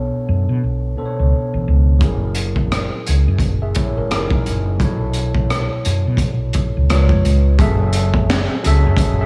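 A small, lightly reverberant studio room frames this sultry, late-night neo-soul R&B clip in F# minor, moving at 86 BPM with a swung 16th-note feel. An overdriven tine electric piano, gritty through a combo amp with subtle chorus and slapback echo, carries chords from Bm9 through F#13 and C#7, while a woody fretless bass sits round and punchy underneath. At 2.0 s a crunchy, saturated breakbeat kit comes in up front with a high-tuned snare, punchy kick, hi-hat, rim clicks and handclaps under a dark, rolled-off top, and the passage settles on F#m9 at 7.6 s.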